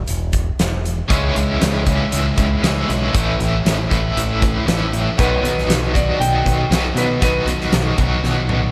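Lightly reverberant and marked by lossy compression artefacts, this short classic rock cut at 118 BPM struts with confident swagger, opening on a growling, overdriven fingered bass and a huge arena drum kit with a fat snare and punchy kick up front. At 1.1 seconds two picked riff guitars enter over C#m, A and B: a biting overdriven one with tremolo up front, and a bright semi-hollow one with spring reverb further back. A dark, scooped, clean lap steel slides in a second line from 5.2 seconds, and a drum fill closes the cut at 8.2 seconds.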